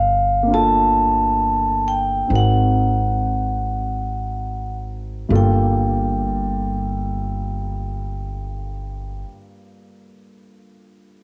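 A vibraphone with medium hard mallets and motor off opens this intimate, melancholic jazz ballad, its airy, ringing melody floating over woody pizzicato upright bass, and a dark, mellow concert grand with deep low notes joins at 0.4 seconds. In free time and G minor, the music slows through its first 5.3 seconds as the harmony moves from Gm9 to Ab9 and returns to Gm9. The bass stops at 9.2 seconds and the vibraphone at 9.3 seconds, leaving the piano alone in light reverb until 11.2 seconds in this fragment of a longer piece.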